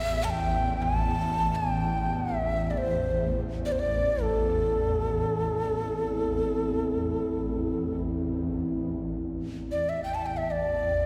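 Soaked in lush hall reverb, this dreamy fragment of free-time world meditation music feels spacious and meditative. A breathy, mellow cedar flute in the Native American style carries the melody up front with vibrato, a crisp chiff and tape echo, over a swarming, nasal drone that warbles and evolves low beneath it with its own built-in reverb. From 5.7 to 9.0 seconds a glass harmonica adds an ethereal, pure texture with a slow attack and gentle beating.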